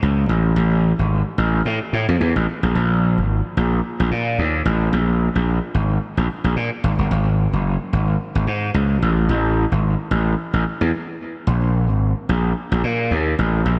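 Funky and late-night, this 110 BPM funk fragment in 4/4 rides a light sixteenth-note swing, carried entirely by a solo electric slap bass that plays from 0.0 to 13.8 seconds. The bass is gritty and growly, bright and punchy, sitting up front with overdrive and a diffuse ambient delay. A lush hall reverb bathes the dreamy mix, and a brief break at 10.9 seconds leads into a return of the opening section at 11.5 seconds.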